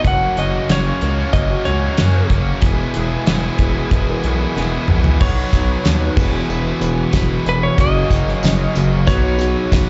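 Classic rock with a confident, driving feel, this short cut sounds like a live club gig heard through the venue's PA, with club reverb and a dulled top end. A clean lap steel guitar carries the melody with a dark, compressed slide tone played with fingerpicks, coloured by slapback and tape echo. Underneath, a cranked stack guitar and a raw garage guitar, the latter set in the background, both play overdriven, picked riffs with slapback echo. A gritty, saturated synth bass sits up front beside a damped 70s drum kit with a fat snare, tight kick and dark cymbals, and a drum fill at 4.6 seconds leads into the second section at 5.2 seconds, where a jingly tambourine joins in the background. Filling out the middle are a reedy electric piano with slapback echo, a boxy parlour acoustic guitar kept very quiet, and a very quiet, shouting tonewheel organ on a slow rotary speaker holding sustained chords.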